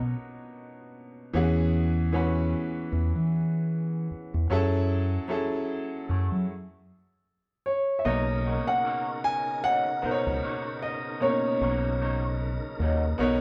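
A lazy, swung sixteenth-note groove in 4/4 sets up this sensual, soulful R&B excerpt, played live by a band in one room. A round, dark fingered electric bass sits up front with a deep dub weight, while a bright, woody upright piano carries the accompaniment with a brilliant, open tone over lush extended chords. A warm concert grand piano states the melody in its upper register, and a clean, picked electric guitar joins at 2.1 seconds with a wah-coloured second line set low in the mix. The band breaks off for a stop at 6.5 seconds, and a new section opens with a full tonewheel organ entering at 8.1 seconds, its sustained chords shimmering through a slow rotary speaker and chorus vibrato. A moderate large-studio reverb gives the whole performance an intimate, roomy glow.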